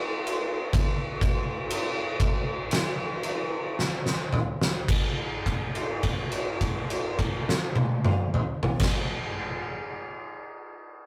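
An oversized, low-tuned acoustic drum kit comes in at 0.3 s, playing alone in a slow, straight 4/4 that feels sludgy and brooding. The kit sits up front, with a boomy kick, a fat snare, dark cymbals and toms, all heard through a big, pumping room and light reverb. The opening passage keeps slowing down and closes with a drum fill from 3.8 to 4.9 s. From there a held note rings out until 8.8 s, and the drums stop at 9.1 s. The rough rehearsal-room sound and tube saturation give the kit a gritty edge, fitting for this short cut from a longer metal piece.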